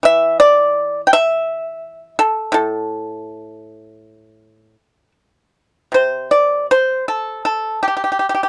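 A lone pipa, plucked with fingerpicks and sitting up front in a dry, close 1970s-style studio sound, carries this longing, elegant fragment of Chinese traditional solo music in the A yu mode, moving with a rubato pulse around 76-85 BPM in 4/4 across a span from A2 to G5, its percussive attack set against a warm body before the phrase turns to a new section at 5.9 seconds.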